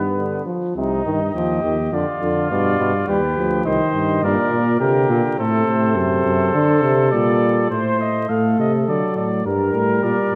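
Classical imitative canzona for brass ensemble in C minor at 104 BPM in 3/4, driving yet contemplative, cut from a longer piece, with a dark trumpet carrying the melody over a warm flugelhorn second line with light vibrato, a clear euphonium accompaniment entering at 0.2 seconds, and an up-front, mellow bass trombone bass with light vibrato, all set in a wet scoring-stage reverb with a dark, warm production and vinyl crackle, moving into a new section at 7.7 seconds.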